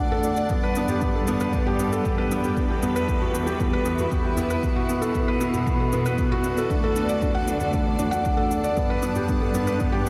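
Piano and strings electronica at 116 BPM in 4/4, luminous and hopeful, this excerpt from a longer piece moves through Gadd9, Emadd9, Bm7 and D inside a dreamy mix soaked in huge ambient reverb. A felt-muted upright piano sits up front with a soft, intimate riff and audible action noise, fed through analog delay and shimmer reverb, while a bright, granular cloud pad holds blurred, detuned sustained chords with sidechain pumping and a rich symphonic cello section bows a lush, vibrato bass line that pumps as well. Layered electronic toms and shaker come in at 0.1 seconds, and a punchy electronic kick follows at 0.5 seconds, both re-recorded in a small room.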